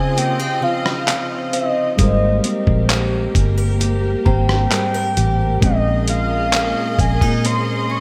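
A straight 4/4 pulse at 66 BPM from a gritty, overdriven sampler-style drum kit with thumpy kick, hi-hat, rim click and handclaps under gated reverb (entering at 0.2 s) anchors this tender, smooth contemporary R&B excerpt in Ab major, where a round, foam-muted fingered electric bass sits up front, chorused, muted felt-like synth keys provide accompaniment and a boxy picked archtop guitar plays arpeggios in the background, a lush bowed symphonic string section holds sustained chords, a very quiet inharmonic FM chime rings until 6.0 s, and a mellow, detuned octave-layered synth lead with vibrato, chorus and delay carries the melody over Dbmaj9, Abmaj9 and Bbm11, all bathed in a 3-second plate reverb and bright 1980s-style digital production.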